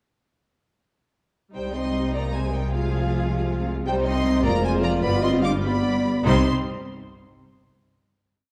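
A stormy, dramatic classical-period movement in C minor for symphony orchestra opens at 1.5 seconds with violins, clear tremolo violas and rich, smooth cellos. Lush, vibrato-laden first violins then carry the melody in 6/8 at a rubato 92-106 BPM, while second violins double it in sixths and at the octave and dark, distant horns hold sustained chords that also double the tune at the octave. Focused double basses double the bass line, and the short whole piece moves from Cm through Fm and G7 to a final Cm chord at 6.3 seconds, all in a wet scoring-stage reverb.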